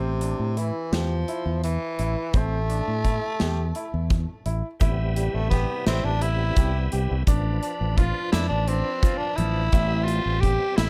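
A dark production with light reverb frames this brooding progressive instrumental, a short cut from a longer piece that drives along at 170 BPM in 7/8 with a straight feel in A minor. Up front, a growling tenor saxophone carries the melody with raspy, gritty jazz-style tone and vibrato, moving into a solo at 4.8 seconds. A punchy fingered electric bass holds the low end, and a big acoustic rock drum kit enters at 0.2 seconds with a punchy kick, medium-tuned snare and hi-hat. A clear, intimate grand piano plays arpeggios throughout, its action noise audible. From 4.8 seconds a bright, shouting tonewheel organ adds full accompaniment with key click, chorus vibrato and a stopped rotary speaker, while a very quiet, grainy tube shaker joins the percussion as the harmony moves from A5 through Am7 and Bdim/A back to Am7.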